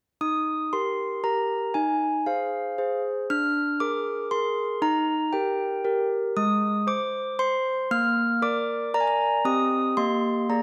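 Handbells ring out alone from 0.2 s, clear and up front, in a tender, dreamy classical lullaby in Eb major. The piece moves at 117 BPM in 3/4 with a straight feel, and the bells, struck with medium clappers, span a range from Ab3 up to F6. Their bell-like tone carries a chord sequence that starts on Eb, passes through Fm7/Eb, Bb7/D, back to Eb, then Ab, Bb and Cm, and settles on Eb/Bb just before the close at 10.6 s. A moderate concert hall reverb surrounds the ringing notes, letting each chord linger in the space. This short passage is cut from a longer piece and forms a single section that lasts the whole time.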